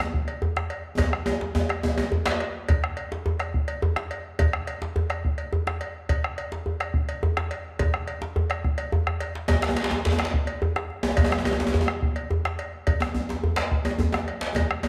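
West African traditional drum ensemble music at 141 BPM in a straight 12/8, earthy and powerful, cut from a longer piece: a round, close and dry bombo sits up front alongside two djembes, one tight and cracking with hard hands, the other deep and rattling with metal, set in a distant large room, while a metallic cowbell enters at 0.3 seconds. The cracking djembe drops out at 2.4 seconds as the opening section gives way to a longer second one, returning at 9.5 seconds, with drum fills marking the turn near 2.7 seconds and again toward the close. A wet echo-chamber reverb gives the ensemble a spacious tail.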